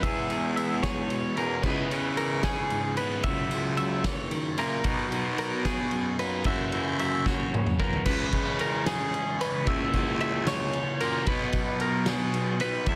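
A loose indie drum kit with a fat snare and punchy kick, bright twelve-string electric guitar arpeggios, a double-tracked overdriven guitar riff through phaser, a raspy, gritty baritone saxophone carrying the bass, and a twangy clean electric guitar in the background open this playful, intricate math rock and midwest emo piece in 6/8, where a drum fill at 7.3 seconds leads into a new section at 8.1 seconds as the clean guitar drops out, set in light reverb with a dense, heavily limited modern master.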